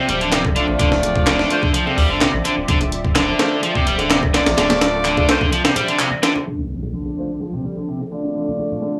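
Breakbeat at 127 BPM in D minor, this raw, swaggering cut opens on a Dm7 with a gritty, compressed sampler-style break up front, its thumpy kick and medium-tuned snare riding over a deep, saturated sub bass that drops out at 5.2 seconds, while congas, bongos, electronic handclaps and tambourine sit in the background. A biting overdriven guitar riff and tight, vibrato-laced horn stabs carry the hook through low-pass filtering and analog delay, above a swirling, detuned sawtooth pad that pumps under sidechain with phaser and chorus. After a band accent at 6.0 seconds the drums fall away, an electronic impact lands at 6.5 seconds, and filter sweeps move across the guitar and pad, all in a dry, small-room recording with transformer grit.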